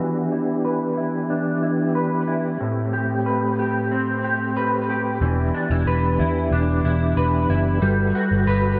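A straight 4/4 pulse at 92 BPM carries this ethereal, dreamy dream pop fragment, where a mellow, flute-like tonewheel organ holds sustained chords through chorus vibrato and a slow rotary speaker while a dark, slightly broken-up electric guitar picks arpeggios through analog chorus and dub echo, a round, foam-muted picked electric bass entering at 5.2 seconds, all over Em7, Am9 and Gmaj9 changes, with a filter sweep across the whole passage and a moderate plate reverb in an echo-heavy mix with a soft top end.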